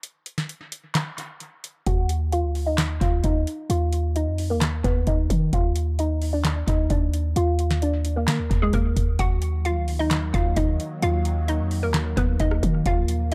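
A half-time 4/4 trap groove at 131 BPM opens with a booming analog drum machine alone for the first 1.9 seconds, with its deep kick, crisp snare, handclaps, rim click and metallic hi-hats carrying tape echo, before a boomy, sine-based 808-style bass and a hollow, detuned square-wave pluck with chorus, tape echo and a filter sweep arrive, joined at 9.2 seconds by an airy, evolving sawtooth pad, giving this dark, melancholic Eb harmonic minor hip hop excerpt a dry, echo-heavy sound.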